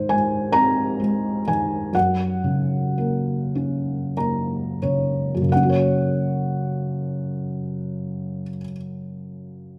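A felt-muted upright piano carries this short classical excerpt alone, its thick felt giving a soft, dark, intimate tone with the mechanical action clearly audible, as though the instrument sits just in front of the listener. The mood is calm and lyrical, in Gb Lydian and 6/8, moving at a very slow 28 to 46 BPM counted in dotted quarters, with a free, rubato feel that slows through the opening 5.5 seconds. The piano spans from Gb2 up to Bb5, and the harmony rests on Ab before settling onto Gb at 1.9 seconds. A piano fill from 3.6 to 5.5 seconds bridges the first section into a second passage that runs until the clip ends at 9.8 seconds. Light reverb surrounds the smooth, vintage character of the instrument, and the tuning sits at A4 = 441 Hz.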